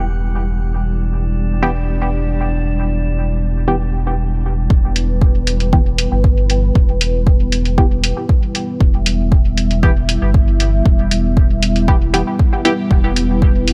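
A dark, detuned analog pad holds sustained E minor chords over a round sine sub bass, both breathing with sidechain pumping, while a glassy texture of drifting overtones shimmers with chorus and its own reverb before dropping out at 4.7 seconds. Muted, sawtooth-edged dub chord stabs with phaser and dub echo enter at 1.6 seconds, and an overdriven, up-front kick arrives at 4.7 seconds, joined by a muffled, pitched-down hi-hat at 5.0 seconds. This cavernous, hypnotic dub techno cut from a longer piece moves at a straight 117 BPM in 4/4, set in a digital ambience.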